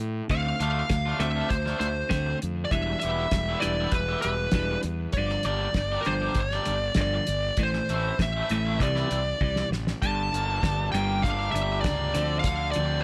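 A small room ambience frames this moody, restless indie rock excerpt, which moves at 99 BPM in a straight 4/4. A growly, overdriven fingered bass with fuzz sits up front and opens alone at 0.0 seconds, joined almost at once by a dark, compressed fuzz lead guitar carrying the melody between Bb4 and A5. Beneath it, a twangy clean electric guitar with subtle chorus picks out a riff, and a raw, bright garage guitar with overdrive adds a second picked riff. The cloth-damped drum kit sounds dry and thuddy, with a fat snare, a tight kick, a rolled-off top, hi-hat and toms. The harmony moves through Dm7, Em7, Gm7, Am and Cadd9, and a drum fill at 9.4 seconds leads into a new section at 10.0 seconds built on Gmadd9 before settling back on Dm7.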